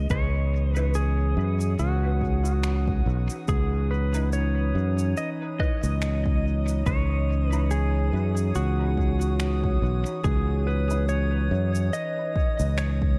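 Hazy and deep, this ambient dub excerpt moves at 71 BPM in 4/4 with a swung sixteenth-note feel, settled on a C#m9 chord in C# minor. A clean, twangy lap steel guitar carries the melody with slide and compression, its lines trailing into dub echo. Beneath it, a warbly, lo-fi tape-like pad holds nostalgic, dark sustained chords in the background, softened by chorus and reverb, while a bright, growly fingered electric bass sits up front. The drums pair a deep electronic kick with electronic cabasa and finger snaps. Both have a tape-warm character, re-recorded in a large room, and the cabasa and snaps also carry dub echo. A glassy, drifting glass-harmonics texture enters at 0.5 seconds and floats high in the background, and from 0.8 seconds a very quiet, muted filtered dub chord stab with detuned tones and phaser adds short plucks until 11.1 seconds, all under a light overall reverb.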